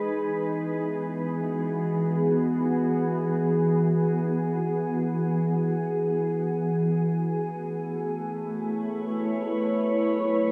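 A glassy, ethereal FM pad plays alone in free time for 10.5 seconds, its slow attack, sustained tones and long release carried by ensemble chorus and built-in reverb, sitting mellow and up front in a huge, wet ambient space as this serene, spacious ambient fragment drifts from Emaj7 to Eadd9 at 4.9 seconds and on to Aadd9.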